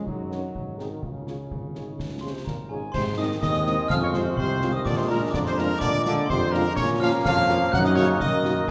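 A straight 2/4 pulse at 125 BPM drives this short, rousing cut from a military-style wind band march, with concert bass drum, snare and dark clash cymbals sounding close and acoustic under a mellow tuba bass and a bright trombone section holding chords. A trumpet section with soft attacks and light vibrato carries the proud melody from 0.3 seconds, while a very quiet French horn section accompanies and a distant woodwind section and a clear euphonium add background lines. At 2.2 seconds a hollow, pure piccolo and a sparkling glockenspiel struck with hard plastic mallets join high above, all set in a roomy concert hall reverb.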